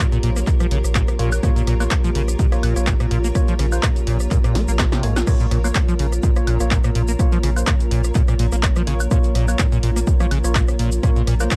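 An excerpt of trippy, driving acid house with a light 16th-note swing opens on a squelchy, resonant acid bass riff with overdrive, tape echo and a cassette-tape grain. It is set against a moody, detuned analog pad held in the background, a grainy, close tube shaker, and soon a cloudy, evolving granular pad with its own reverb. A dry, overdriven drum machine of snare, handclaps, hi-hat, rim click, woodblock and crash enters almost at once, followed by a round, deep bass holding a single low note. A punchy electronic kick re-recorded in a large room then sits up front from 0.5 seconds, and the drum machine plays a fill at 4.6 seconds. Hollow, organ-like stabs with chorus and tape echo enter at 1.2 seconds over a single minor chord, and the pads and basses pump with sidechain in a dark, dry production.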